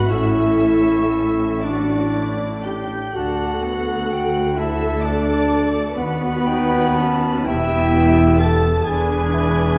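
A slow, serene and tender romantic orchestral movement in D major and 6/8, moving with rubato at around 38-44 BPM, this short cut from a longer piece has a distant, lush, vibrato-rich violin section carrying the melody high above, while a clear solo clarinet, an airy silver flute and a smooth second violin section weave supporting lines. Beneath them an expressive viola section with portamento supplies the accompaniment, a mellow French horn section holds sustained chords in the background, and a dark, punchy trumpet section adds tight stabs. An intense double bass section and an even cello section anchor the bass as the harmony passes from A through D and B/D# to Em and E7, all bathed in a wet scoring-stage reverb within a dark, warm production.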